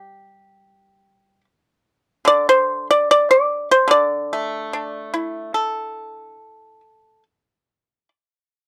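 This Chinese traditional solo for plucked strings has an elegant, pastoral mood, moving in a free, rubato 4/4 around 73 BPM in the D shang mode. A lone pipa, played with fingerpicks, carries the whole passage from 0.0 to 8.1 seconds across a span from D3 to D5, its tone acoustic, percussive and sitting up front. Close, detailed microphones and very little reverb keep the sound dry and intimate in this short fragment from a longer piece.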